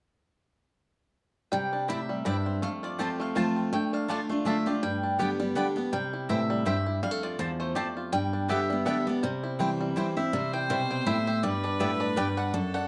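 At 1.5 seconds, a twangy, fingerpicked banjo and a mellow, woody double-strung mandolin take up the melody together over a bright, full-bodied dreadnought guitar that sits up front with a picked accompaniment. This is a virtuosic, rustic bluegrass piece in a swinging 3/4, cut from a longer performance. From 1.9 seconds, a second mandolin adds picked stabs across its range. The harmony moves from Cadd9 through F, Dm and G before settling back on C. At 10.3 seconds the music shifts into a new section, where a single biting fiddle with light vibrato and an airy bow enters on a second line. The production is dark and warm, with moderate studio reverb giving the acoustic instruments a modest sense of room.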